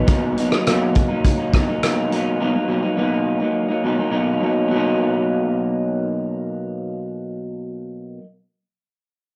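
A slightly broken-up electric guitar through a small old amp carries this dreamy, laid-back bedroom-pop fragment, its picked accompaniment on a Bmaj7 shimmering with lush chorus and vibrato from the start to 8.3 seconds. A loose indie drum kit with a punchy kick, hi-hat and rim click sits up front with saturated 12-bit sampler grit and a rolled-off top, playing only until 2.2 seconds. At a straight 104 BPM in B major, tuned slightly low to A4 = 438 Hz, the cut-off passage sits in a dark, warm production with a modest small-room reverb.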